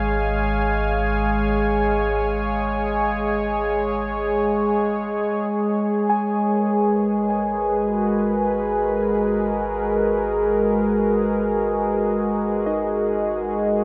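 In free time, this spacious, reflective ambient excerpt opens on a smooth, detuned analog pad holding sustained chords up front, over a deep, ominous drone that rumbles in the bass, all set in a huge, wet reverb. At 5.5 s the harmony settles onto G#m7 as the drone fades in, and from 6.1 s muted, felt-like synth keys add soft, decaying arpeggios in the background, touched with chorus and delay.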